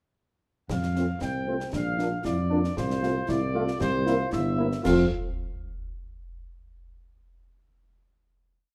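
Opening at 0.7 s with a distant, roomy trumpet section carrying a tight melody over a mellow, up-front tuba marking bass on the beats and a close, dry marching snare with concert bass drum and dark clash cymbals, this brief, proud and festive military-style wind band march soon adds a smooth-topped French horn section playing after-beat chords, a punchy trombone section sustaining chords in the background, and a vintage-toned euphonium counter-melody from 1.2 s, before the band settles onto a final F chord at 4.8 s in a moderate studio reverb.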